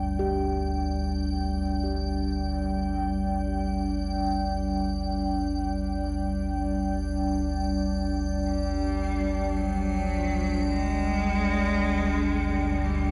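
Hazy with cassette tape and set in a vast, echoing space with a long reverb tail, this ominous dark ambient drone in free time, tuned to A4 = 436 Hz, rests on a deep rumbling drone and a moody, detuned analog pad with chorus, both up front, while an icy, crystalline glass pad shimmers high above. Metallic bronze gamelan-type bossed gongs play soft, beating arpeggios in the background through a delay before falling away at 6.7 s. At 8.5 s a single rich, focused cello enters with a bowed, vibrato melody touched by delay, carrying on until the cut from a longer piece.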